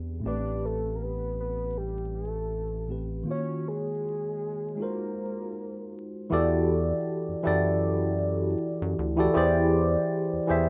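R&B with a soulful, late-night mood, built on a worn, slightly out-of-tune tine electric piano, lightly overdriven through a combo amp with a phaser, over a rubbery, hollow square bass with a bouncy filter pluck and a gently swung sixteenth feel. A soft, octave-layered synth lead, round and dark with vibrato, chorus and slapback echo, sings up front from 0.3 to 5.9 seconds before the piano and bass carry the second section from 6.3 seconds on rich chords like Em11 and E7alt. The sound is a rough home demo in a moderate studio room, dusted with vinyl crackle, and is cut from a longer piece.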